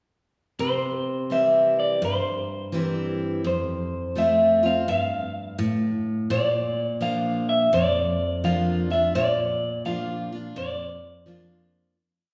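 Heard from further back in a wet recital hall, this short, swung country piece has a heartfelt, nostalgic glow. An electric guitar through a small old amp carries a twangy, slightly broken-up melody built from motifs in sentence-like phrases, while a bright, full-bodied dreadnought acoustic guitar alternates bass and strum with bass runs over C, F and Bb. Both guitars are up front and enter at 0.6 seconds, and the piece fades out from 9.1 seconds.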